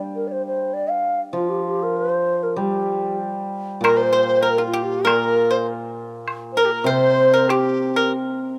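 A shimmering, ringing hammered dulcimer opens this tender, graceful passage of Chinese traditional chamber music, played low and up front as accompaniment. At 0.2 seconds a mellow, hollow xiao takes the melody, its pure bamboo tone sounding a little distant, with vibrato and tongued notes. The music moves at 98 BPM in 2/4 but with uneven beats and a rubato feel, set in a G yu mode. At 3.8 seconds the ensemble fills out: a bright, reedy large dizi with a buzzing membrane and soft attack and a dry, percussive pipa played with fingerpicks enter together, both carrying a second line alongside the xiao, while a woodblock adds percussion in a small-room sound. Close, detailed microphones and light reverb give the playing an intimate clarity in this short section cut from a longer piece.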